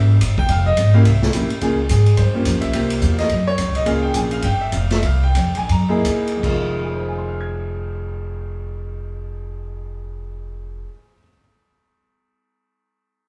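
This jazz piano trio excerpt carries a cool, smoky mood over a swung 4/4 feel, trimmed from a longer piece. A bright, brilliant grand piano carries the melody up front with a natural tone, ranging from its low register to high, sparkling notes. A pizzicato upright bass with steel strings sits close and woody beneath it. A vintage drum kit plays ride, hi-hat, crash, snare and kick at a lower level; its dark cymbals, punchy kick and rolled-off top give it a mid-forward, studio-room character. The band plays together in one room under a wet studio reverb, and the harmony moves through minor-seventh, altered-dominant, sus and sixth chords before returning to Fm7. The tempo slows from 3.9 seconds, and the drums drop out at 6.5 seconds, leaving piano and bass to close the passage.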